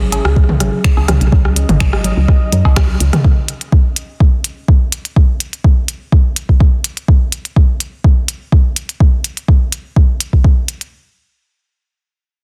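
A dense, heavily limited mix with little reverb carries this quirky, hypnotic minimal techno in C# minor at 125 BPM with a light 16th-note swing: a woody, round FM bass and a deep, warbling, detuned ambient pad pump under sidechain on a C#m chord, while layered congas, cowbell, rim clicks and toms with delay join clicky finger snaps and tape-tinged hi-hats, and once the bass, pad and percussion kit fall away by 3.2 s, a soft, up-front electronic kick carries on until just before the close while the snaps and hats run to the end.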